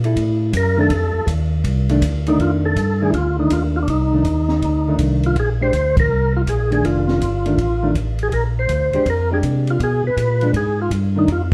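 Swinging and soulful, this clip from a longer soul jazz organ trio piece moves at a brisk 162 BPM in 4/4 with a moderate swing on the eighth notes, centred on F mixolydian. A fat, lightly overdriven tonewheel organ carries the bass line from the start, its key click and slow rotary speaker up front, and it takes a featured solo spot over the first 2.4 seconds. A compact cocktail drum kit plays hi-hat, ride, snare and kick throughout, sounding dark and smooth with a high-tuned snare, a punchy kick and a rolled-off top. A clean, fingered hollow-body jazz guitar comps alongside in a dusky tone, while a second, percussive tonewheel organ takes the melody from 0.6 seconds, full-bodied with second-harmonic percussion, chorus vibrato and its own slow rotary swirl. The band hits an accent together at 5.9 seconds as the harmony moves through rich F13, Bb9 and Bb13 colours, all set in a moderate club reverb that places the listener somewhat back in the room.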